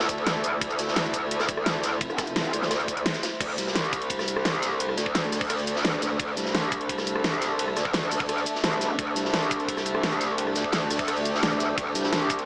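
A dark, deep pad of detuned sawtooth chords and a metallic, wobbling bass open this mechanical, tense slice of technical drum and bass, already in the middle of a drop. The pad is moody and pumping under chorus and its own reverb, while the overdriven FM bass sits aggressive and up front. Two layered drum kits drive it: an overdriven dubstep kit with a huge snare, bright hats, cabasa and crash, and a gritty, saturated breakbeat kit with dark cymbals and a rolled-off top. A knocking electronic kick enters at 0.1 seconds, and the whole mix sits in a lush hall reverb with a small-speaker sound.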